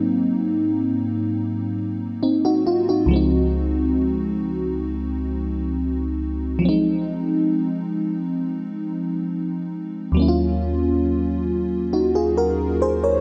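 An FM electric piano layered with a soft pad carries this brief solo R&B fragment, a dreamy, warbling voice with a vintage sheen, a fast attack that decays, and a noise layer sitting close up front. At a slow 68 BPM in straight 4/4 and Eb dorian, the mood is one of late-night longing. Chorus and tape echo give the keys their lush shimmer, spanning Db2 to Db5, while a moderate hall reverb with a 2.6-second tail opens the space around them. The harmony moves from Ab9 through Dbmaj7 and Fm7 before settling on Ebm7 at 10.2 seconds. Cut from a longer piece, the passage runs 13.2 seconds.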